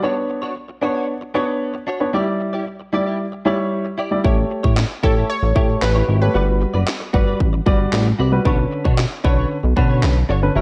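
A dark, intimate baby grand piano, pumping with sidechain, opens this confident dance-pop excerpt alongside a bright, direct-recorded clean electric guitar riff with ensemble chorus. At 4.2 seconds a glossy, chorused synth bass and a layered house drum kit arrive up front. The kit's punchy kick, cracking snare and handclaps drive the groove, while a round, detuned analog pluck with chorus and delay carries a brief melody from 5.0 seconds. A worn, warbling cassette-tape character with pitch drift, faint mains hum and light reverb colours the sound.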